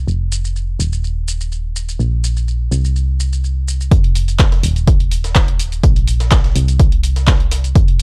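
A steady, straight 4/4 pulse at 125 BPM drives this bittersweet, energetic piano house excerpt, where a round, dark FM bass with sidechain pumping and punchy analog drum-machine claps, hi-hat and shaker play from the start, until a drop at 3.9 seconds brings in an up-front electronic kick and a very quiet, pitched-up, gritty breakbeat kit of hi-hat, snare and tambourine, all captured in a dry, cassette-tinged hardware sound.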